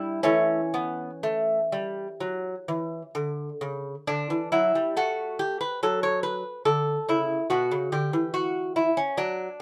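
A light reverb surrounds a solo lute placed up front, its gut strings giving a warm, delicate tone filled out by double courses, some of them strung in octaves. This short classical passage, cut from a longer piece, is a baroque-style dance in D major, moving in 4/4 at roughly 60 to 72 BPM with a free, rubato feel. The fingerpicked lute spans from B2 up to C#5 and carries the whole texture by itself for the full 9.6 seconds. Its harmony moves from A over E through D, F#5 and B minor. The opening phrase returns at 4.1 seconds, and the mood stays radiant and flowing throughout.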